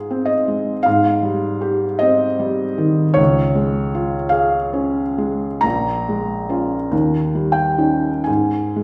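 Tender and dreamy, this brief cut from a longer romantic nocturne unfolds at a slow 42 to 54 BPM in 4/4, with a freely breathing rubato feel. A felt-muted upright piano plays alone from 0.0 to 8.8 s, ranging from Bb1 up to Bb5, its tone soft, mellow and intimate with a vintage character, sitting up front in the mix. The harmony drifts from Fm/Ab and Cm/Ab toward Db at 3.2 s, then moves through Bbm7 and Eb7 before the chords fall away at 8.3 s. A wet recital hall reverb, drawn from a church or concert hall setting, surrounds the instrument with a gentle glow. The tuning sits slightly high at A4 = 441 Hz, adding a subtle shade to the hushed, private atmosphere.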